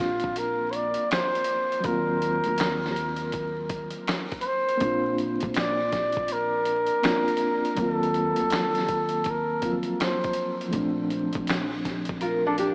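A breathy, whispered flugelhorn carries the melody until 10.6 s in this dreamy, mellow lo-fi hip hop excerpt at 81 BPM in Bb major, swung over a reedy electric piano with fast tremolo and cassette grit, a woody pizzicato upright bass, and a dusty, compressed sampler-style kit of finger snaps, hi-hat, thumpy kick and snare, before a full-bodied fingerpicked nylon-string guitar steps up front at 12.2 s, all bathed in huge ambient reverb, vinyl crackle and a small-speaker sound.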